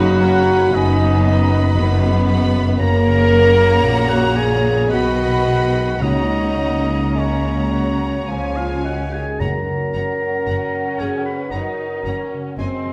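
Classical orchestral music, this is a slow, romantic movement in 3/4 at around 52-59 BPM, played with a tender, lyrical rubato feel in F# major and cut from a longer piece. A lush violin section carries the melody high in its range, while a clear solo oboe weaves a supporting line alongside a second violin line and an airy, mellow flute ensemble with rolled-off highs, both sitting in the background. Beneath them, a distant solo bassoon and a focused viola section provide accompaniment, a punchy French horn section holds sustained chords prominently, and a bright concert harp rings out very quiet arpeggios across a broad span. Cello and double bass sections anchor the bass with smooth, even bowing, the cellos sounding somewhat distant. Soft-mallet timpani with calf heads add round, close and dry touches from 0.0 to 1.2 seconds and again from 6.0 to 11.0 seconds. The whole ensemble sits in a wet recital hall reverb as the harmony moves from B over F# through F#, B and C# before settling back on F# at 9.4 seconds.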